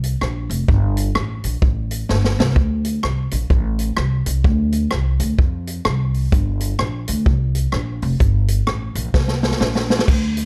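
A dry, close-sounding excerpt of mischievous, energetic ska in G minor at 128 BPM with a swung feel, where a woody pizzicato upright bass and a natural, up-front big-band drum kit, with its punchy kick, medium-tuned snare, rim clicks, hi-hat and crash cymbal, play together throughout, the drums breaking into fills at 2.1 and 9.1 seconds.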